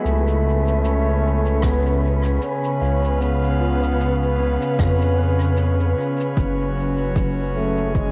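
Ambient dub at a relaxed 76 BPM with a gentle 16th-note swing, this deep, spacious excerpt sets a mellow trombone melody with vibrato and dub echo over an airy, breathy pad with chorus and cassette-tape grit, a very quiet pure FM bell arpeggio, a dark wind-like tuned noise texture in the background until 6.4 s, and a round, up-front analog bass, while a natural small-room shaker and rim click carry dub echo and a punchy, layered electronic kick joins at 1.6 s, all moving from C#7 to F#madd9 at 6.4 s in a lo-fi home cassette recording.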